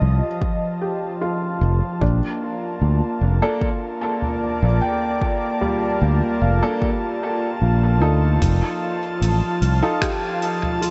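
A slow, straight 4/4 pulse at 75 BPM anchors this spacious, hazy ambient dub fragment, cut from a longer piece. A deep, overdriven electronic kick sits up front beside a warm fingered electric bass, while a soft-mallet drum kit of finger snaps, hi-hat and toms joins at 4.2 seconds, its natural hall tone trailing off in dub echo. An airy, breathy pad with a slow attack and chorus holds sustained chords over F7 and Bbmaj7, and a felt-muted upright piano, intimate and mellow with audible action noise, spins arpeggios through the same echo. From 3.4 seconds a clear, woody upright piano adds short, boxy stabs, and at 9.5 seconds a reversed, granular texture swells in faintly, detuned and dreamy. A huge ambient reverb with a 5.2-second tail blurs the whole mix, capped in the highs and carrying a faint mains hum.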